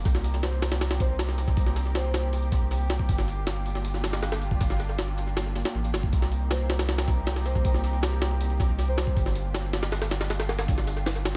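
Nostalgic and dark, this drum and bass cut in the jungle style moves in a straight 4/4, taken from a longer piece and built on a slow alternation of Cm7 and Gm7 chords. Up front, a sampler-style jungle kit of hi-hat, kick and snare sounds compressed and pitched up, with a thumpy kick, a high-tuned snare and a gritty, tape-toned character carrying tape echo and the sense of being re-recorded in a large room. Sharing the foreground, a deep, round dub sub bass blends triangle and square waves with a fast attack and sustained notes, thickened by tube saturation. Beneath them, a muted string section holds bowed, con sordino chords with a veiled quality, light vibrato and a soft attack. Set in the background, a breathy, flute-like synth lead with a noise layer, vibrato, subtle chorus and dub echo appears in two phrases, first from 0.4 to 2.3 seconds and again from 6.5 seconds. The echo-heavy mix sits in light reverb and digital ambience.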